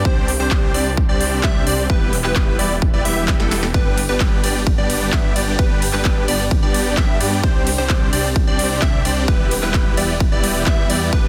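A huge, detuned supersaw lead carries an anthemic riff through this euphoric festival progressive house excerpt at 130 BPM, pumping against the sidechain with delay trailing its bright sustained notes over chords moving from Csus2 through Em and G. Beneath it, a catchy square-wave pluck spins arpeggios through phaser and cassette-tape colour, a thick chorused saw bass anchors the low end, and a very quiet, warbling vintage pad holds sustained chords. An up-front punchy kick and a big-room kit of handclaps, snare, crisp hats and ride drive the dense, heavily limited mix, with a drum fill and a barely audible swell at 3.3 seconds.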